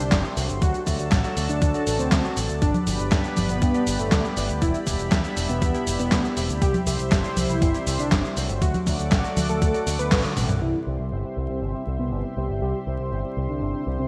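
A thick, bold unison synth lead with digital delay carries the melody through this sunny, danceable italo disco excerpt at 120 BPM, over a smooth, chorused sawtooth pad holding sustained chords, barky background tine electric piano stabs, a bright picked bass with an envelope filter, and an up-front, gritty sampler-style kit (cabasa, congas, handclaps, hi-hat, snare and toms with gated reverb) alongside a thumpy electronic kick, all moving through C, D, G and Em7 until a band accent at 10.1 seconds and a drum fill end the drums at 10.6 seconds, leaving the other parts in a lush hall reverb with vinyl crackle and bright 1980s-style digital production.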